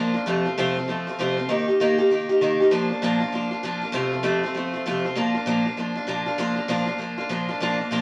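A picked acoustic archtop guitar opens this short rock fragment and carries it by itself for the full 8 seconds, setting a rowdy, upbeat mood. The playing swings in four, with a lively shuffle to the eighth notes. The guitar's tone is boxy and sits up front, ranging from low F2 up to G4. Its chords move from F to Eb to Bb, back to F, and settle on Bb at 5.2 seconds, where the opening section begins again. A moderate stone room reverb surrounds the guitar, lending the sound of a band playing live together in one space.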